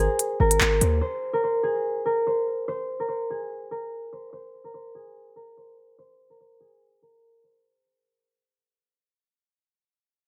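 Ominous and cold, this half-time drill fragment at 145 BPM, tuned to A4 = 436 Hz, opens on an Abadd9 chord with a punchy, heavy 808-style sine bass carrying a noise layer up front, joined at 0.2 seconds by crisp electronic hi-hats and handclaps, both gone by 1.0 seconds, while a mellow, thumb-plucked concert harp melody rings on through a low-pass filter sweep and a fade-out in a moderate plate reverb until 9.4 seconds.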